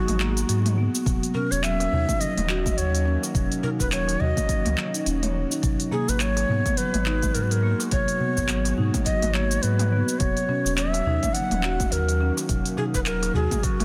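Organic downtempo in G# minor at 105 BPM, this hypnotic, mystical excerpt moves with a gentle 16th-note swing. A breathy Native American-style cedar flute sits up front with the melody, its wooden tone carrying vibrato, a crisp chiff and a touch of digital delay. Soft-mallet marimba arpeggios add round, boxy color with their own delay, while a warbling, lo-fi tape-like pad hangs in the background, detuned and nostalgic under chorus, phaser and sidechain pumping. A deep sine sub bass also pumps against the beat. The organic electronic drum kit brings smooth hats, handclaps, shaker and toms, a clay-shelled darbuka murmurs behind it, and a deep, tape-colored electronic kick joins at 1.1 s. The chords move from G#m9 through D#m7 and G#m7, all within a light digital ambience and a dense, heavily limited master.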